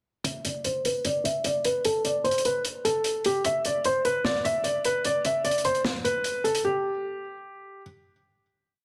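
A felt-muted upright piano leads this short, dark and eerie hip hop trap piece, its boxy, intimate tone carrying audible action noise as a looping melody repeats like a sampled loop under a low-pass filter sweep. Beneath it, at 150 BPM in a half-time feel, a vintage acoustic drum kit with a medium-tuned snare and rolled-off top plays a trap beat with fast hi-hat rolls until 6.6 seconds, leaving the piano alone for the final note. Both parts sit up front in a moderate recital hall reverb, and the master is dense and heavily limited.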